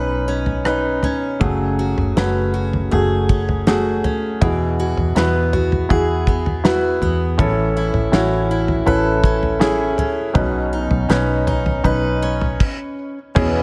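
A moderate scoring-stage reverb with a touch of small-room ambience gives this fragment of a heartfelt, tender pop ballad a soft glow, moving at 80 BPM in a straight 4/4. A polished baby grand piano sits up front with the accompaniment, while a bright, picked steel-string acoustic guitar spins arpeggios through a digital delay, a finger squeak catching the ear. A round, foam-muted electric bass with an amped, vintage darkness holds the low end, and a dry, damped 70s drum kit enters at 0.5 seconds with a tight kick, a medium-tuned snare, rim clicks, toms and dusky crash cymbals. The harmony drifts from Badd9 through F#madd9 and Eadd9 to A before returning to Badd9, and the band stops at 12.6 seconds. At 13.4 seconds a close, floating cello section slips in just as the fragment ends, bowed sul tasto with a soft attack and a pure ensemble tone.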